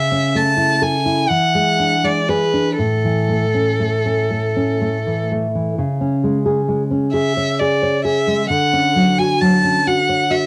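A homely cassette recording in a small, moderately ambient room gives this tender, serene romantic duo an intimate cast, with the violin close and both it and the nylon-string guitar up front. At a slow, rubato pace of around 39-45 BPM in 6/8 and A major, a single bowed violin carries a smooth, even melody with vibrato, while the guitar fills the role of accompaniment with a dark, full-bodied, thumb-plucked tone and an occasional finger squeak. The harmony moves from A through E9 toward a second passage beginning at 5.8 seconds and settling onto Dmaj7 at 8.5 seconds, a brief glimpse of a longer piece.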